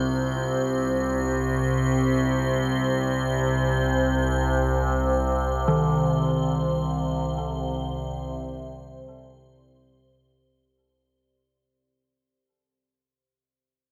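In free time, this dark, cavernous ambient drone fragment in C minor rests on a Cm chord, with an up-front, overtone-sweeping drone of detuned sawtooth and sine fading in under chorus and its own reverb, a bright, icy glass pad of airy, crystalline sine tones and a noise layer with a moving notch fading in high above, and a mid-forward bronze gamelan-type metallophone ringing out wooden-mallet arpeggios through delay until 12.5 s, set within a dreamy mix soaked in plate reverb as a fade-out begins at 4.7 s.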